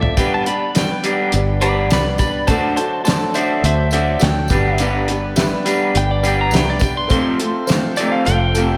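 A drum fill opens this short cut of nostalgic, open-road folk and heartland rock at 104 BPM in G major, the cloth-damped kit sitting up front with a fat snare and tight kick beside a round, foam-muted fingered bass, while a dark, clean lap steel carries a compressed slide solo with slapback echo across the whole 8.8 seconds. Beneath it, a slightly broken-up, twangy electric guitar through a small old amp plays the riff with spring reverb and slapback, a picked steel-string acoustic with audible finger squeak plays in the background, and a woody upright piano adds very quiet support from the start, joined from 0.2 seconds by a lightly overdriven tonewheel organ on slow rotary speaker and a jingly, saturated tambourine. The chords move from G to D, back to G and then F, all set in a wet recital-hall reverb for a big arena sound.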